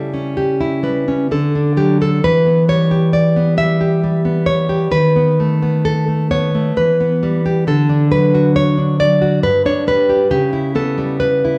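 Swaying freely in a rubato triple metre, this short passage from a longer romantic piece features a solo fingerpicked nylon-string guitar, up front and warm in tone, moving through nostalgic harmonies from A7/C# and D toward Em, B7/D# and G before reaching C#m7b5, all set in a wet recital hall reverb with a hint of small-room ambience.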